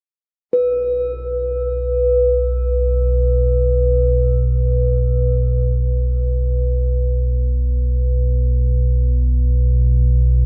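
This dark ambient drone piece unfolds in free time, an ominous and desolate fragment cut from a longer work. A bronze singing bowl sounds first at 0.5 s, a ringing, metallic tone struck with a felt mallet, its mellow, soft voice carrying a slow beating and a boxy small-room character. At 0.9 s a deep rumbling drone enters beneath it, spanning B1 to B2 with a nasal edge drawn from triangle and sawtooth tones laced with ring modulation. The drone has a slow attack, a sustained body and a long release, and its built-in reverb and lush chorus give it a dark weight. Both parts sit up front and hold until 10.5 s, the drone a little louder than the meditative bowl, inside a huge ambient space whose reverb tail stretches to 7.7 seconds.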